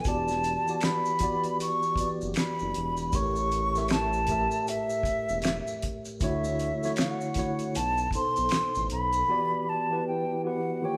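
R&B with a neo-soul lean, this short cut from a longer piece feels soulful and unhurried, carried by a gentle sixteenth-note swing in four. A hollow, pure silver concert flute sits up front with the melody, its tongued notes touched with vibrato, while a clean tine electric piano, heard through its built-in speakers, lays down mellow chords beneath it. Low in the mix, a smooth synth bass blending sawtooth and triangle tones gives a fast-attack, sustained foundation. A cloth-damped acoustic drum kit, dry and dark with a fat snare, tight kick, hi-hat and rolled-off top, joins faint vintage, band-limited maracas, finger snaps and group handclaps. The harmony moves from Em9 through A7b9, Dmaj9 and B7b9 back to Em9, the band sounding live together in one room under a wet, large studio reverb, with drums, percussion and bass falling away near 9.3 seconds so flute and electric piano ring on alone until 11.0 seconds.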